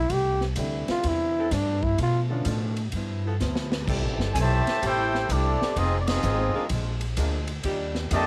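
A raspy, growling trombone leads at the start of this joyful, brassy big band swing excerpt at 127 BPM, over a woody pizzicato upright bass, a boxy picked archtop guitar, a punchy swinging drum kit and a brief intimate baby grand piano, before a dark saxophone section adds sustained chords and, from 4.3 s, a smooth-topped trumpet section takes the melody above a mellow trombone section in the background, the whole heard as a light-reverb home recording on cassette.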